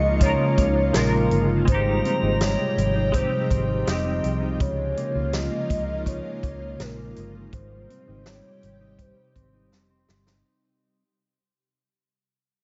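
A straight 4/4 pulse at 82 BPM carries this ethereal, floating dream pop excerpt, with a vintage drum kit entering at 0.2 seconds to set up a natural, up-front beat of hi-hat, punchy kick and medium-tuned snare, closing on a drum fill from 9.7 seconds. Beneath it, a vintage muted fingered electric bass gives round, foam-muted low notes, while a mellow electric guitar, dark and clean, spins arpeggios through analog chorus and digital delay. A semi-hollow electric guitar adds clean, compressed accompaniment with tremolo and analog chorus, dropping away at 5.1 seconds. An airy pad built from detuned sawtooth and triangle layers holds sustained chords with slow attack, ensemble chorus and its own reverb. On top, a hollow, woody clarinet-like synth lead sings a soft melody with vibrato, chorus and delay, while the harmony sways between Db6 and Abmaj7 in light room ambience as the whole passage fades out.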